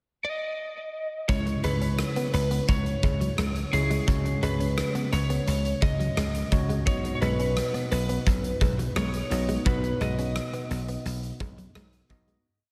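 A dark, slightly broken-up lead guitar with subtle chorus and tape echo opens alone at 0.2 s, picking a motif-based melody over a short pickup before a romantic, uplifting 1980s-style pop verse arrives at 1.3 s at 86 BPM in straight 4/4, moving through C#m, F#sus2/C# and B. A bell-like tine electric piano pushes drop2 chords, a dry, foam-muted thumbed slap bass drives eighth notes, a big rock drum kit with a punchy kick, rim click and hi-hat hits an up-front backbeat, and a clean, direct-recorded electric guitar with analog chorus and tape echo picks a muted single-note riff in the background. The dreamy mix is soaked in lush hall reverb with lossy compression artefacts, and the piece fades out from 9.7 s.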